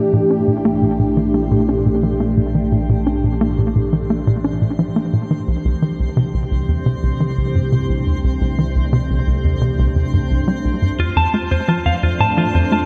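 Luminous and cosmic, this ambient piece of sequencer-driven space music moves at 87 BPM in a straight 4/4, heard here as a short cut from a longer work. A tight, punchy sequencer bass drives a plucked sawtooth and square-wave riff with a fast attack, its decaying notes trailed by tape echo and placed up front. Beneath it, a detuned analog drone holds low sustained tones with pulse-width modulation and chorus, while a swirling phased analog pad carries slow-attack chords through phaser and chorus as the harmony moves from Bb to C and then F at 11.0 seconds. A sparkling granular texture with an octave-up shimmer fades in from 0.6 seconds, glinting softly in its own reverb. At 11.0 seconds a clean, compressed semi-hollow electric guitar arrives with picked arpeggios touched by tape echo, and a lush hall reverb soaks the whole mix in a dreamy haze.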